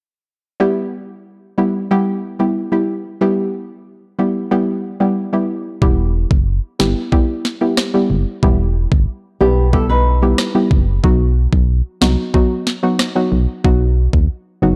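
Tough and sultry, this dancehall excerpt moves at 92 BPM in E harmonic minor, opening with a soft, round, chorused pluck that sits dark and up front over an Em chord from 0.6 seconds. At 5.8 seconds a punchy, digital FM bass and an overdriven electronic drum kit with a knocking kick, rim click and sharp snare arrive together, while a full-bodied, thumb-plucked nylon-string guitar adds brief arpeggios through analog delay from 9.4 seconds before the harmony shifts to B. The dry, gritty sound carries a transformer-saturated edge, with the bass and drums pressed close to the listener.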